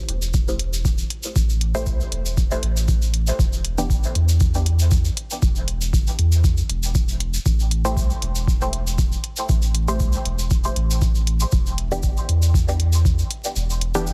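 A dense, heavily limited master with vinyl crackle and little reverb frames this deep, hypnotic dub techno excerpt, which swings gently in 4/4 over a slow Am–Em–Am7–Em7 cycle. A round, soft sub bass with tube saturation and sidechain pumping sits up front alongside an overdriven, layered electronic hi-hat, while a deep analog kick drum re-recorded in a large room and a grainy, bright tube shaker complete the groove. A muted, detuned chord stab with a filter pluck, phaser, dub echo and its own sidechain pumping appears at 1.7 seconds, drops out at 3.9 seconds and returns at 7.8 seconds to evolve through the rest of the passage.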